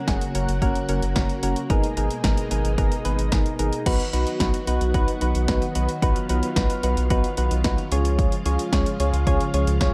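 A punchy analog drum machine sits up front with a tape-warm kick, snare, hi-hat and crash, driving this upbeat, nostalgic synth-pop excerpt at 111 BPM in a straight 4/4. A round, dark analog bass anchors the low end, while soft, mellow electric-piano-like synth keys with chorus play the accompaniment over a vintage, warbling organ-string ensemble holding sustained chords. Light reverb surrounds the parts as the harmony moves from F# through G#madd9 to B at 3.9 seconds and C# at 7.9 seconds.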